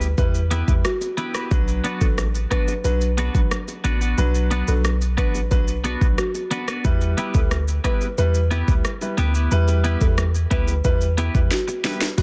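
A deep, boomy 808-style bass sits up front in this sultry, hypnotic dancehall excerpt at 90 BPM, under Em and Bm chords, beside an electronic afro-pop kit with a deep kick, a sharp, softly clipped snare, metallic hats and a drum fill from 11.5 seconds. A bright, twangy twelve-string electric guitar plays arpeggios through lush chorus and delay, while a worn baby grand piano with long sustain accompanies and very quiet, low-tuned bongos add percussion. From 0.2 seconds a buzzing, woody marimba with soft mallets carries the melody in the background, and the dense, heavily limited mix has little reverb.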